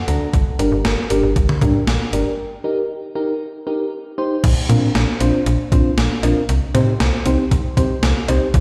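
A mellow FM electric piano fill opens this cool, driving synth-pop clip at 117 BPM in straight 4/4, and the soft, round keys, shimmering with chorus and phaser, then carry the accompaniment over Gm, Eb, Bbadd9 and Cm, with a break at 2.4 seconds. Up front, a snappy slap-like FM bass with a metallic attack joins a thumpy, tape-tinged 80s digital drum machine whose kick, gated-reverb snare, hi-hat, toms, cowbell and crash sound sampler-style. The whole mix sits in a lush hall reverb and the stony echo of a bare room, as if played over a big sound system.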